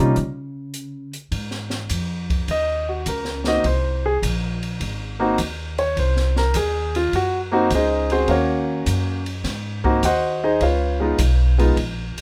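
This relaxed, swinging jazz piano trio excerpt opens with a brief upright bass solo, its plucked steel strings sounding woody and up front. The open drum kit comes in at 0.2 seconds with hi-hat, kick, ride and snare, set back in the mix in a small-room sound with dark cymbals, a high-tuned snare and a boomy kick. At 1.3 seconds the warm concert grand piano takes the solo over an Ab7 chord, its natural tone and deep low end sitting up front across a range from G3 to Gb5. The tune is in Ab mixolydian at 103 BPM in 4/4 with a gentle swing on the eighth notes, and the harmony moves through Ebm7 and back to Ab7 before landing on Db7. Light reverb surrounds the trio, a faint mains hum sits beneath it, and the bass and drums play on until 12.2 seconds.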